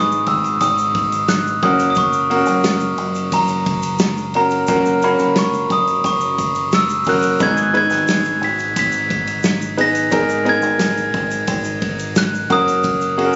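Piano-driven pop at 88 BPM in 4/4, this hopeful, anthemic fragment moves between G#m and F#. A mellow, bell-like glockenspiel played with rubber mallets carries the melody up front over a clear, smooth concert grand piano and a dark, round fingered electric bass, while a natural acoustic drum kit with a punchy kick and medium-tuned snare enters at 0.3 seconds. A grainy tube shaker sits in the background, and the whole take has the muffled, compressed sound of a phone capturing a small room, with club reverb.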